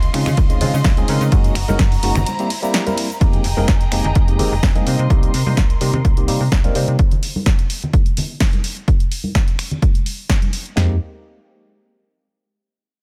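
A straight 4/4 groove at 127 BPM drives this groovy, nostalgic filtered disco house cut in F minor: an up-front, tape-warmed analog drum machine hits punchy kick, snare and toms while a second machine adds finger snaps, hi-hat, ride and snare with sidechain pumping on its cymbals, bright egg shaker and congas sit back in a live room, and a snappy, metallic FM bass and a clean, amp-colored tine electric piano with phaser pump beneath a low-pass filter alongside a lush, vibrato-rich studio violin section holding chords such as Dbmaj9 and Fm11, until the strings, bass and keys stop at 7.0 s amid a long filter sweep and the bass and piano return briefly at 10.8 s.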